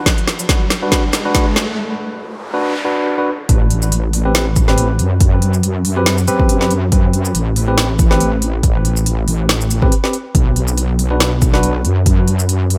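Opening on an electronic riser over a drum fill that gives way to a noise sweep in the break, this meditative, cavernous deep dubstep cut at 140 BPM in A dorian pairs a deep, layered kick with a woody snare, smooth hats and shaker, adds barky, bright electric piano stabs through dub echo from 0.8 seconds, and lands its drop at 3.5 seconds, where a heavy, saturated, detuned wobble bass with chorus moves up front in a half-time, swung groove over Am7 before returning to Bm at 10.3 seconds, all set in light digital ambience.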